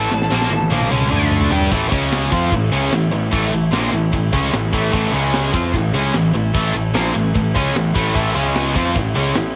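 A dark, high-gain lead guitar line with cassette tape and tape echo opens this aggressive, dark heavy metal excerpt at 149 BPM in 4/4, dropping out at 1.3 seconds while two bright, overdriven, double-tracked guitars drive the riff, one up front and one in the background, over a fuzzy, overdriven picked bass. A tight metal drum kit with bright cymbals, a high-tuned snare and a tight kick opens with a fill in a big, airy room, and a very quiet, hollow pipe organ clarinet stop with baroque voicing and chiff sustains chords beneath. The harmony rests on A, moving through D5 and C#5, and the whole piece carries the feel of a home recording on cassette.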